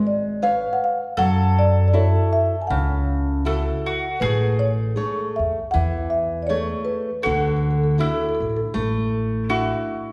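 A round, mellow marimba played with soft mallets carries the melody of this romantic, passionate Italian folk serenade at 79 BPM, dropping out at 8.6 s. Beneath it, a bright, fingerpicked nylon-string guitar sits up front with a dark, pizzicato upright bass, while a picked bowl-back mandolin with double strings adds a quieter second line. The harmony moves from F# minor into A major at 4.2 s, and the whole group rings in the lush reverb of a recital hall in this cut from a longer piece.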